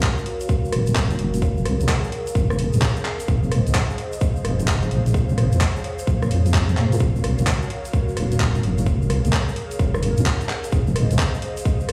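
A deep, dark wobble bass with a chorused sawtooth edge sits up front from 0.7 seconds, anchoring this moody, soulful two-step UK garage excerpt at 129 BPM in Eb dorian, swung at 64% on the sixteenths. A tight, overdriven electronic kick and a layered garage kit of handclaps, hi-hat and rim click drive the groove, while a grainy egg shaker ticks in the background and an airy, breathy pad with chorus and sidechain pumping holds sustained chords from Ebm9 through Gbmaj9, Fm7 and Bbm9. Light stone-room reverb gives the mix the feel of a big sound system played in a bare room.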